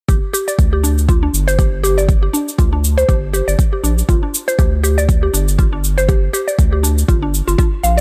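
Spiritual and earthy in mood, this short excerpt of afro house rides a swung sixteenth-note feel in 4/4. A woody, mallet-like synth pluck spins arpeggios across its range from the start, its percussive FM tone colored by chorus, phaser and dub echo, and pumping against the beat through sidechain compression. Beneath it, a round analog bass holds the low end with a dark, sustained sine-like body, also pumping with the sidechain. An overdriven electronic kick sits up front as the loudest element and drops out at 7.7 seconds, while a layered cabasa, re-recorded in a small room, adds texture further back. The harmony rests on a G5 chord, and the mix stays dry and close, with little reverb around the parts.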